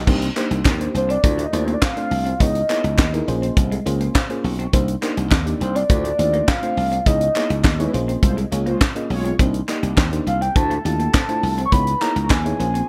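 A snug small-room ambience with light reverb frames this short, slick slice of early-eighties boogie funk, cut from a longer piece and carrying a late-night mood over a straight four-four groove. Up front, a tight acoustic drum kit with a high-tuned snare, hi-hat, kick, crash and handclaps drives the track, joined by a punchy, bright slap bass and a more distant group handclap that sounds as if recorded in a larger hall. A mellow FM electric piano, round and dark with a chorus shimmer, comps through lush minor ninth chords moving between Cm9, Dm9, Dbm9 and Bbm9, and it slips in a short fill around 3.9 seconds. Barely audible beneath, a clean, picked semi-hollow guitar adds a hollow-bodied riff. From 1.0 seconds a soft, octave-layered synth lead carries the melody with a gentle attack, vibrato, chorus and phaser. Between 7.8 and 9.3 seconds a brassy, detuned sawtooth synth section with a filter sweep adds a second line during a full-band accent.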